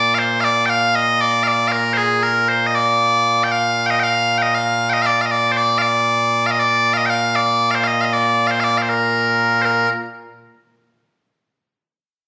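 Scottish traditional pipe music in a straight 6/8 at 78 dotted-quarter beats per minute, this excerpt from a longer piece has a ceremonial, stirring character in B-flat major. A solo bagpipe carries everything, loud, bright and piercing, its continuous tone sitting up front and reaching from B-flat two up to G five. The pipes sound from the opening until 9.9 seconds, and at 9.7 seconds the tune moves into a new section just before the recording is cut off. The instrument was captured on a phone in the room, and a moderate hall reverb with roughly 1.3 seconds of decay surrounds the sound with a clublike ambience. The result feels close and immediate, like standing near a piper in a resonant space.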